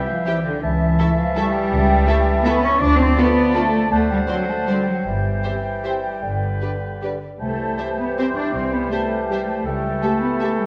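This excerpt from a longer classical orchestral ballroom waltz in C major opens with a dark cello section up front on the bass, an airy, mellow large flute ensemble, a bright clarinet and a smooth-topped oboe sharing the second line, a bassoon in the background, and sustained chords from a distant, roomy French horn section and a clear, tight trombone section. From 0.3 seconds a sul tasto violin section carries the intimate melody in the background, joined by a second, rich violin section and a very quiet viola section, while a pure, floating double bass section adds to the bass at 0.6 seconds. Elegant and sweeping, the 3/4 waltz moves with rubato at 146-179 BPM, set in a moderate scoring stage reverb and colored by worn, warbling old cassette tape with pitch drift.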